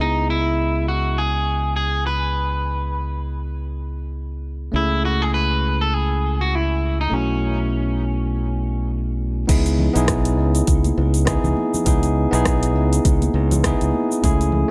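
Sunset chillout with a wistful, smooth feel and a swung lilt, opening on a twangy, slightly broken-up electric guitar melody with warbly pitch drift and tape echo over a bell-like, barky electric piano and a bright, up-front fingered bass, until at 9.5 seconds the guitar has dropped out and an overdriven deep electronic kick and a small-room R&B kit with cabasa, crash, rim click and hi-hats arrive, joined at 9.8 seconds by soft-handed congas and bongos ringing in the background, all in light reverb in this excerpt from a longer piece.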